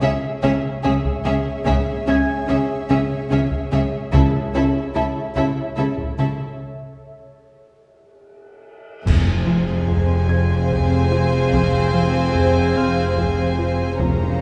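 Opening on soft-attack, sul tasto violins carrying a floating melody and second line over violas, an ethereal chorused pad, a punchy filter-plucked analog bass riff, intimate cellos, distant double basses, ringing harp and very quiet hard-mallet timpani, with heavy-stick taiko joining at 0.4 s, this tense, ominous cinematic suspense cue in 3/4 at 73 BPM breaks at 6.6 s for a cymbal swell, clash cymbals and concert bass drum, then lands on F minor with a band accent at 9.1 s as mellow French horns and bright, very quiet trombones add sustained chords, the ensemble heard from further back in a reverberant scoring stage.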